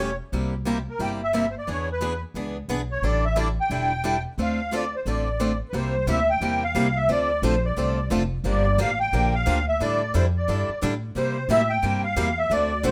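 Light reverb frames this short cut from a longer acoustic string swing piece, bittersweet in mood yet fiery in its drive, set in 4/4 with a swung eighth-note feel. A musette accordion carries the melody up front from start to finish, its reedy, shimmering musette tuning and boxy small-room sound lending a warm edge to the line. Two picked acoustic guitars supply the accompaniment: a swing-style guitar with bright, fresh strings and a boxy tone, and a steel-string parlour guitar of similar crisp character that rests in the background. Underneath, a pizzicato upright bass on gut strings gives a woody, dark, thumpy foundation, placed up front in the mix. The harmony moves through chords such as C7, E7, A7sus4 and Dm7, with a second passage from 5.7 seconds that adds Gm7 before circling back to C7 near 11.2 seconds.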